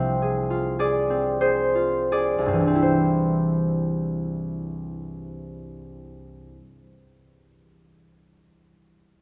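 Classical solo harp music in 3/4 with a dreamy, serene mood and a free, rubato feel, slowing over the first 2.8 seconds. The concert harp sits up front, ringing and fingerpicked across a span from C2 to E5, moving from an F minor colour over C to a settled C major chord at 2.8 seconds. A wet recital hall reverb surrounds this short fragment, cut from a longer piece.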